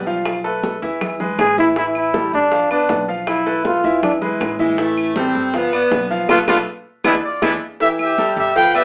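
Danceable and driving, this short salsa passage cut from a longer piece moves at 159 BPM in a straight 4/4, heard from further back in the room with an AM radio character and a wet studio reverb. A bright, brilliant upright piano carries the accompaniment up front with long sustain, while a dark, thumpy pizzicato upright bass on gut strings anchors the low end. Bongos and cowbell, woody claves and high-tuned, damped congas sit in the background from 0.3 seconds, with the bongos and congas played with soft hands. A punchy solo trombone with light vibrato takes the melody from 1.4 seconds, joined by a close-miked saxophone section on a second line, and the harmony cycles through chords such as Fmaj7#11/B, E, G7 and Bm7b5 before resolving to A5. A band accent and a drum fill lead into the final stretch, where a smooth-topped trumpet section takes over the melody from 7.3 seconds.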